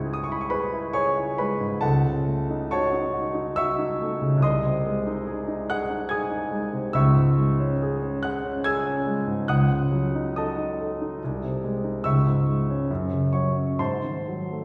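A romantic classical character piece for solo piano unfolds in a brooding, bittersweet mood, taken from a longer work. Set in C# minor at about 70 BPM in 3/4, it moves with uneven beats and free rubato, and the piano is tuned to A4 = 439 Hz. A concert grand plays alone from 0.0 to 14.6 seconds, its tone natural and up front with a deep bass and a range stretching from B#1 to G#6. The harmony circles between C#m, D#m7b5 over a C# bass and G# over B#, then closes on F#5 and a tense G#7b9. A recital hall reverb with a 1.5 second tail surrounds the piano, giving it the glow of a church or concert hall.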